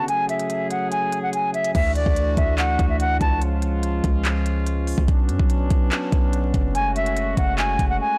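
Melancholic yet hard-hitting, this short cut from a longer trap and hip hop piece sits in F# minor at 144 BPM with a half-time feel. A hollow, airy concert flute carries the melody up front, close-miked with vibrato and a crisp attack, softened by a low-pass filter and trailed by delay. It plays until 3.4 seconds and returns from 6.7 seconds. Beneath it, a mellow brass section holds smooth, classical-style chords through a progression of F#madd9, Dadd9, C#, Bmadd9 and back to F#madd9. The electronic drum kit hits with a knocking kick, crisp hi-hats, handclaps and crash cymbal, its kick dropping out briefly before a deep, boomy 808-style bass enters at 1.7 seconds with a fast attack and decaying sine tone layered with noise. The whole recording has a blown-out, overdriven character with digital ambience and vinyl crackle, ending on a brief silent gap at 8.0 seconds.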